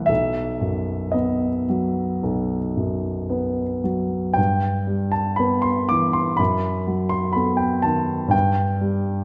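A moderate concert-hall reverb surrounds an intimate, up-front grand piano whose dark, mellow tone carries audible action noise. This brief cut from a longer romantic nocturne moves in a rubato 4/4 at roughly 54-64 BPM, its mood wistful and yearning as the harmony passes from B to Em/G and then B7/F#. The piano alone spans B1 to D6 and plays throughout the 9.2 seconds.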